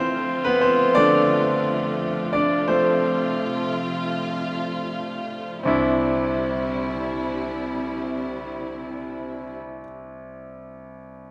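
A straight 4/4 pulse sits between 76 and 90 BPM, slowing down over the first 5.7 seconds of this pop piece in C major, tuned to A4 = 437 Hz. A bright concert grand piano carries the accompaniment up front, its deep bass and long sustain giving the music an anthemic, uplifting lift across a range from C2 to D5. Beneath it, a studio string section holds sustained, bowed chords played sul tasto with vibrato and a soft attack, an intimate, close ensemble sound set lower in the mix. The harmony moves from Dm to F and then settles on Cadd9, where a new section begins. The strings stop at 9.6 seconds while the piano continues to 11.3 seconds, with the band heard playing live in one room under a large, wet reverb, in a passage cut from a longer piece.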